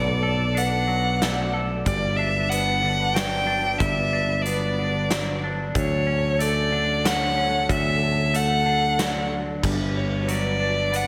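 Cathartic and melancholic, this post-rock passage at 93 BPM in 3/4, cut from a longer piece, sets a biting, up-front bowed violin melody with slapback echo over soft, sul tasto studio strings in the background, bright, twangy twelve-string electric guitar arpeggios with vibrato effect and slapback echo, ringing hard-mallet vibraphone arpeggios with slapback echo, and a growly picked electric bass, while a big rock drum kit with a punchy kick and bright cymbals enters at 0.6 s, all moving through Bm7, Gmaj7 and Dmaj7 in light reverb and small room ambience.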